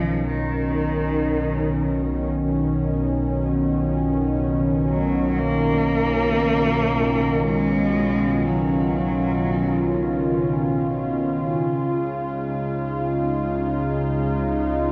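In free time and tuned to A4 = 435 Hz, this peaceful, weightless ambient passage from a longer piece floats on a smooth, detuned sawtooth pad with chorus and shimmer reverb, holding chords up front over a deep, round sine sub bass. A rich, expressive bowed cello carries the melody with vibrato and portamento through shimmer reverb and tape echo until 10.6 s, while a very quiet, calm organ-like drone enters at 7.0 s. The harmony moves from Cb to Db at 11.6 s, all within a wet spring-reverb room and the soft haze of a home cassette recording.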